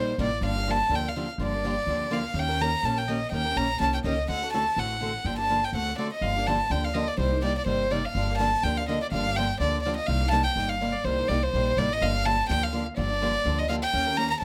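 Fiery yet bittersweet, this short cut from a longer acoustic string swing piece in the jazz manouche style races along at 249 BPM in 4/4, with a 55% swing on the eighths in G minor. A single bowed violin sits up front and carries the melody between C5 and Bb5, its intimate, close tone shaped by a soft attack, an airy sul tasto bow and light vibrato. Beneath it, a picked steel-string parlour guitar supplies warm accompaniment, while a pizzicato upright bass with gut strings adds a woody, dark and thumpy low end from G1 to Eb2. The harmony moves from Gm7 through Eb7 and D7, and a second passage starting at 6.2 seconds turns between Gm7 and Cm7 before landing on Eb7 at 13.9 seconds. Light reverb gives the three players a small sense of space.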